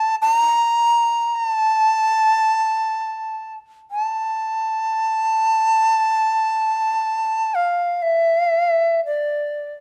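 A long bamboo shakuhachi plays alone, its end-blown, airy tone bright and reedy with a straight, soft-attacked sound and lifted highs, sitting up front for the full 9.7 seconds. This calm, austere piece of Japanese traditional chamber music unfolds in free time within a single section, cut from a longer work. Close, detailed microphones and light reverb keep the airy bamboo tone clear and detailed.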